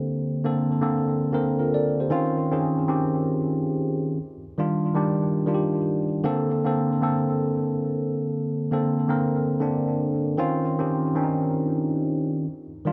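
Swung sixteenths give this soulful amapiano fragment its gentle sway as a lone tine electric piano, worn, slightly out of tune, lightly overdriven and sitting direct and up front with phaser and digital delay in light reverb, moves through Bbmaj9, Dbmaj9 and Ebmaj9 chords across its 12.9 seconds.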